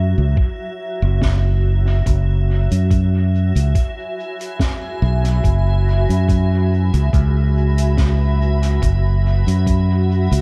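Ambient dub with a spacious, hazy mood, cut from a longer piece, where a growly, up-front fingered electric bass carries the low end under a blurred, detuned granular cloud pad that holds slow-attack chords moving from F#7 to E/F# in its built-in reverb. A compressed, thumpy electronic kick drum, muffled and tape-tinged, enters at 0.4 seconds, and a distant, roomy soft-mallet kit with hi-hat and snare follows at 1.2 seconds, its rolled-off top trailing dub echo. The production is dark and cloaked in studio reverb, with a light swing on the sixteenths.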